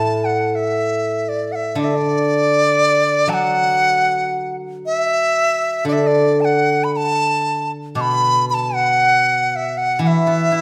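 The rhythm moves freely in rubato around a slow 58 BPM pulse in 2/4, giving this festive, pastoral Chinese traditional piece a free-flowing feel in the D gong mode. A bright bamboo dizi carries the melody between D5 and D6, its buzzing membrane and airy tone sitting up front with soft attacks, lifted highs and expressive vibrato. Beneath it, an acoustic steel-string zither played with fingerpicks provides the accompaniment from A2 to E4, its ringing, silvery strings also placed close to the listener. Both instruments play throughout the roughly 10.6 seconds of this excerpt, which is cut from a longer piece. A wet recital hall reverb with a 1.3-second decay surrounds the pair, lending the performance a spacious, resonant setting.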